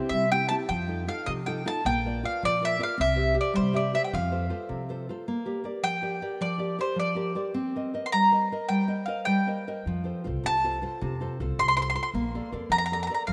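Lively and sunny, this Italian folk serenade excerpt moves in a rubato 6/8 at 105 BPM, starting in F major and shifting to Bb major at 5.3 s as the chords pass through F7, Cm7 and Bbmaj7. A mellow, round mandolin with doubled strings carries the melody up front, while a fingerpicked classical nylon-string guitar, also up front and warm, supplies accompaniment. A woody, thumpy pizzicato upright bass with gut strings plays from the start, drops out at 5.1 s and returns at 9.9 s, all set in a lush hall reverb within a rough home-demo mix.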